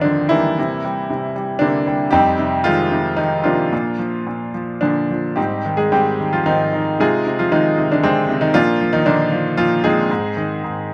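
Warm and sunny, this lyrical classical piece for solo piano moves in an unhurried 3/4 at roughly 102-120 BPM, its rubato phrasing letting the pulse breathe. A bright grand piano carries everything alone, ranging from F2 up to Ab4 in a radiant Ab lydian colour. The harmony drifts gently through chords such as Fm7, Bb and Abmaj7 before settling back on Ab at 10.1 seconds, with a short piano fill arriving at 10.6 seconds. Close, detailed miking places the instrument up front and intimate, its brilliant tone sitting in light reverb while the audible action noise adds a tactile presence. The passage is cut from a longer piece and lasts just under eleven seconds.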